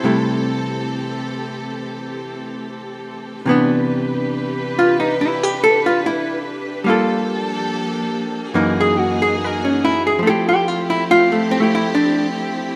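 A moderate plate reverb gives this short cut from a longer jazz ballad a soft, lingering glow, setting a romantic and intimate mood at an unhurried, swung pace in four. Up front, a clean, hollow-body archtop electric guitar, miked through its amplifier, provides picked accompaniment throughout. Beneath it, a close studio string section holds sustained bowed chords, played sul tasto with vibrato and a soft attack, sitting quieter in the mix. The harmony opens on C6, then shifts at 3.5 seconds into a new passage that moves through Cmaj9, Gm9 and F#13 before settling on Fmaj9. The rich, extended chords and the pairing of mellow guitar with hushed strings give the piece a late-night tenderness.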